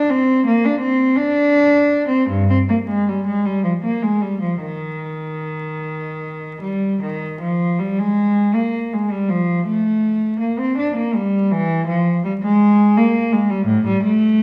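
A lone bowed cello with a rich, reedy gut-string tone plays up front in period style through this serene, dance-like baroque-style suite movement in Eb major, moving in a rubato 6/8 at 48-57 BPM by the dotted quarter across 14.4 seconds cut from a longer piece, all set in a recital-hall reverb and colored by worn, warbling cassette tape, vinyl crackle and drifting pitch.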